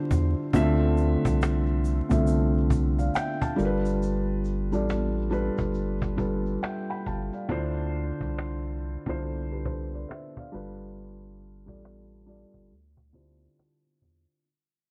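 A felt-muted upright piano opens this hazy, melancholic lo-fi hip hop fragment at 69 BPM with a swung 16th-note feel in D dorian, its soft, mellow tone carrying audible action noise and a cassette-tape character as it moves between Dm7 and G7 chords. A round, deep analog bass sits up front beside a snappy, close and dry cajon, while a grainy egg shaker ticks in the background until it stops at 7.5 s. The dark production adds vinyl crackle, a low-pass filter and light reverb, with a filter sweep running from 0.5 s and a fade-out beginning at 2.6 s.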